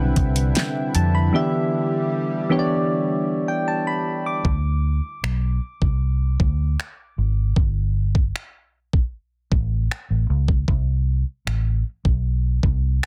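A straight 4/4 groove of knocking kick, fat snare, metallic hats and finger snaps, muted from 1.3 to 4.4 seconds, drives this moody, longing contemporary R&B excerpt, where a dark, foam-muted fingered electric bass sits up front beneath soft, mellow electric-piano-like synth keys with chorus and a thick, detuned unison pad with chorus and sidechain pumping that stops at 4.4 seconds, all in a dry, dense, heavily limited modern master.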